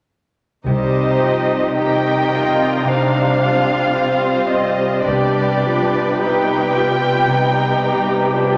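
At 0.7 s, muted violins carry a veiled, melancholic melody up front over a second violin line, with soft-attacked violas and con sordino cellos and double basses holding the bass in the background. A mellow horn section sustains chords behind them while a very quiet harp rings out fingerpicked arpeggios, all in a solemn, rubato slow movement cut from a longer symphonic piece. The harmony moves from C minor to G over C at 5.1 s, the double basses drop out at 6.2 s, and a wet scoring-stage reverb surrounds the whole orchestra.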